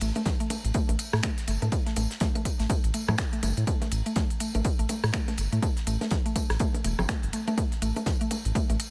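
A dry cut from a longer minimal techno track, hypnotic and quirky, with a swung 16th feel and a punchy analog kick that sits up front from 0.3 seconds. A deep, round, detuned analog bass with tube saturation pumps under the sidechain, while a woody, percussive FM synth pluck repeats a riff through chorus and dub echo. Layered techno snaps and smooth hi-hats, a jingly tambourine, tape-toned electronic bongos, congas, claves and rim clicks with dub echo from 0.2 seconds, and a damped 70s kit with dark cymbals and a fat snare in the background fill out the groove.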